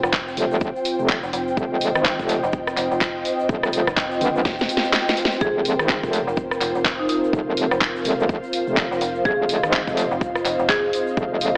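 Bouncy and aggressive, this bass house excerpt moves at 125 BPM in 4/4 with a 59% swing on the sixteenths, built on a punchy, tape-warm electronic kick and an up-front house kit of cracking snare, handclaps, hi-hat and rim click, with a grainy egg shaker in the background and a drum fill from 4.5 to 5.4 seconds. A saturated, wobbling metallic FM bass sits up front beside a mellow, decaying metallic bass, both pumping against the kick, while a deep, moody detuned analog pad holds sustained chords and an ethereal, airy pad with ensemble chorus adds a sustained texture behind them. At 5.4 seconds a woody, bright marimba enters with a gritty 12-bit sampler edge and tape echo, and the whole mix is bathed in lush hall reverb and filtered to an AM-radio tone.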